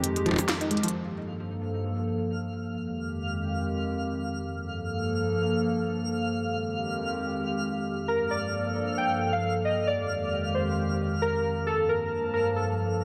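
This intricate, glitchy IDM excerpt opens at 134 BPM with a lightly swung 16th-note feel: a nostalgic, tape-like pad sustains dark Fm9 and Gm9 chords, a brief burst of clicky, overdriven drums with a tiny snare and percussion blips and a soft, round pluck arpeggio both fall away by 1.0 seconds, a faint twinkling granular shimmer enters at 1.3 seconds, and mellow, airy lo-fi synth keys with chorus and delay carry a warbling melody again from 8.1 seconds, all set in a moderate plate reverb.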